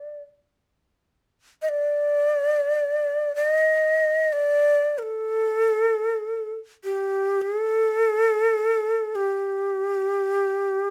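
The recording sits in a moderate studio reverb that gives the close, up-front instrument a small halo of room around it. This is a short passage of Japanese traditional chamber music in free time, cut from a longer piece, and its mood is meditative and still. A lone shakuhachi carries the whole passage, its end-blown bamboo tone breathy and hollow, with a crisp, chiffy attack on each note and lifted highs. Vibrato colors the tone as the line moves within the span from G4 to Eb5. From 7.1 seconds the playing slows down, drawing the phrase out until the passage ends at 10.9 seconds.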